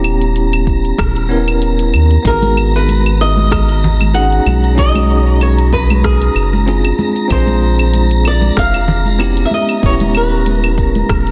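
Swung 16ths at 95 BPM in 4/4 drive this warm, smooth sunset chillout excerpt: a dark-hatted deep house kit ticks out claves, hi-hat, rim click and shaker with a softly clipped snare, and a deep, layered electronic kick joins at 0.7 seconds, while a round, up-front analog bass and a bell-like tine electric piano with digital delay move through extended chords under an airy, breathy tuned noise texture; then fingerpicked flamenco guitar with audible finger squeak takes the melody through delay at 2.3 seconds, joined by hard-handed congas in the background, in a dense, heavily limited modern master with light reverb.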